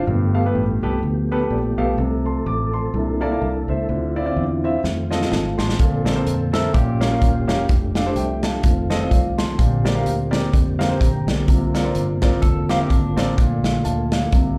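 A swung 126 BPM gospel groove in F major, hopeful and uplifting, opens on intimate grand piano with audible action noise and a fill at 1.3 seconds, soft flute-like tonewheel organ chords turning through a slow rotary speaker, and punchy foam-muted fingered bass, before the airy, punchy acoustic drum kit enters with a fill at 4.8 seconds and a bright, twangy clean electric guitar adds brief second lines from 6.5 seconds, all heard through a club PA in a small room.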